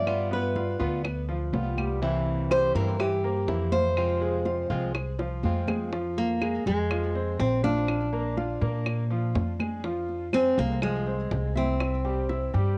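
Nostalgic and sultry, this short excerpt cut from a longer piece is Latin music in the Cuban son and guajira style, moving at 123 BPM in a straight 4/4 and set in F harmonic minor. Up front, a bright, full-bodied nylon-string guitar carries the fingerpicked classical melody, its fresh strings catching an occasional finger squeak, colored by cassette tape saturation and tape echo. A fingerpicked flamenco guitar adds accompaniment until 5.9 seconds, while a brilliant baby grand piano plays arpeggios with long sustain throughout. An up-front pizzicato upright bass gives a growly, thumpy, woody foundation. In the background, ringing high-tuned congas and round low-tuned bongos are struck with hard hands, joined by vintage, band-limited claves, with a drum fill at 5.2 seconds before the opening section repeats. Light reverb and a homespun cassette sound frame the whole, over chords moving from G7 and C7 to Fm, Bb and C.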